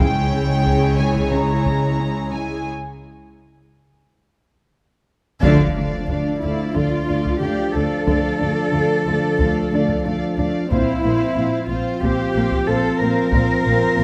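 Mysterious and ominous, this 91 BPM suspense film cue is cut from a longer piece, with a full string body sounding together from the start: floating, pure sul tasto violins carry the melody over a woody, distant second violin line, intimate violas, an up-front cello riff, a cello bass line set in the background, and dark double basses, all bowed within a moderate scoring-stage reverb. Taiko drums struck with hard sticks drive the piece, a break at 2.7 s leading to a drum fill that resolves into a band accent at 5.4 s. At that moment the music settles into D minor, a huge dark impact sounds in the background, and a present French horn section enters with soft-attack sustained chords.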